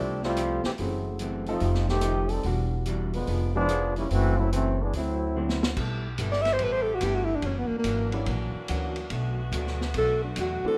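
Big band swing with a brassy, swinging mood, taken from a longer piece. A clear, tight trombone section carries the opening with light vibrato, sitting up front over a woody, growly pizzicato upright bass. Underneath, a vintage drum kit with dark cymbals, a medium-tuned snare and a punchy kick keeps the swing going, and it plays a fill just before the trombones drop out at 5.6 seconds. From 5.8 seconds a bright, loose saxophone section holds sustained chords in the background, and a breathy, close-miked alto saxophone takes the solo from 6.3 seconds, sitting up front with vibrato. Throughout, a dark, clean hollow-body electric guitar and an open baby grand piano fill in the harmony from the background, all set in light reverb.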